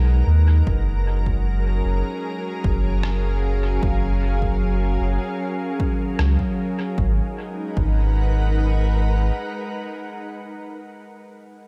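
A meditative, deep ambient dub piece at 76 BPM in G# dorian opens with a soft, organ-like pad of detuned sine tones holding calm, sustained chords, pure and bright with ensemble chorus and its own reverb, over a round, up-front sub bass shaped by a filter sweep until 7.0 s. An overdriven, punchy electronic kick sits in the background from 0.7 s, joined for a time by a muffled, pitched-down, tape-tinged rim click with studio reverb and dub echo, while the harmony moves between G#m9 and F#maj7. The kick stops at 8.0 s and the sub bass shortly after, leaving the pad to sustain alone in a light reverb.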